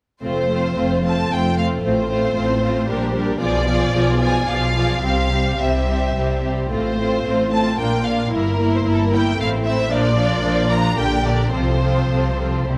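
In a 3/4 at 104-116 BPM with a rubato feel, this spirited, cheerful classical-period string passage in F major is cut from a longer movement, with all five sections playing together from 0.2 s to about 12.8 s. A rich, up-front first violin section carries the melody while a softer, more distant second violin line glides with portamento above a smooth, even viola accompaniment. Dark, woody cellos and soft-attacked double basses anchor the bass, and the close, detailed sound sits in a moderate concert hall reverb.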